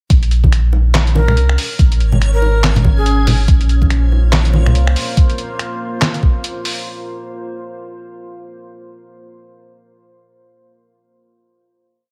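Deep dubstep in a heavy, meditative half-time drop, built on an overdriven, knocking electronic kick up front and a round, soft sub bass holding long dark notes. Alongside them come a gritty, pitched-down sampler-style kit of snaps, claps, hi-hats and snare, and echoing acoustic bongos and congas from a small room. A breathy, reedy shakuhachi with dub echo plays short tongued phrases from 1.2 seconds, a reversed, detuned granular texture holds a dreamy high note in the background, and from 4.0 to 6.8 seconds a moody ambient pad with chorus and its own reverb sustains dark chords.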